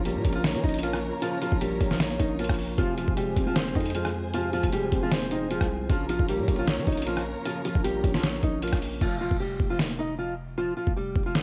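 Dark and eerie, this short half-time trap cut at 154 BPM in F minor sets a fingerpicked, up-front nylon-string guitar melody with a cassette-tape haze over a dark, mellow baby grand piano and lush bowed strings that both drop out at 9.0 seconds, while a growling, buzzy 808-style bass and a muffled, pitched-down sampler-style drum kit with a thumpy kick carry on, the hi-hats falling silent from 9.0 seconds as the chords move from Bbm and Fm to a closing F5.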